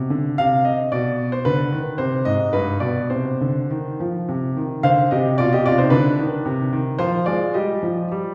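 A dramatic, restless classical-period piano sonatina fragment in C minor, taken at 110 BPM in 2/4 with a free rubato feel, in which a clear, vintage-toned concert grand with a deep bass plays solo through a brief passage heard twice, ringing in a lush recital-hall reverb as if heard from further back in the room.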